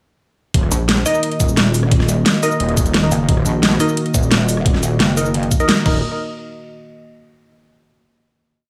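Dark technical drum and bass at 175 BPM in Eb minor, this tense, futuristic piece drops straight in at 0.5 seconds with an overdriven, knocking electronic kick and tight dubstep drums with a huge snare, metallic hats, rim clicks, cabasa and crash under small room ambience. A thick, detuned sawtooth bass plays chopped phrases alongside a saturated, pulsing pluck wobble bass whose wobble speed changes, while a moody analog pad holds sustained chords with chorus and sidechain pumping. Sparse, muted dub chord stabs in power voicing echo through phaser and digital delay from 1.1 seconds, all set in light digital reverb until a final hit at 6.0 seconds.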